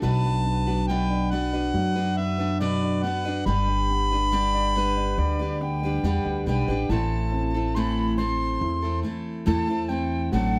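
A mellow, smooth-topped harmonica carries the melody in this melancholic, reflective acoustic folk piece, backed by a bright picked steel-string guitar with a touch of finger squeak, an intimate upright piano playing arpeggios with audible action noise, and a dark, pizzicato upright bass up front. A breathy, reedy alto recorder with vibrato and chiff enters as a second line at 4.3 seconds and takes a solo from 6.9 seconds, as the harmony moves from B minor through G to A minor. Moderate studio reverb surrounds the parts in this short section cut from a longer piece.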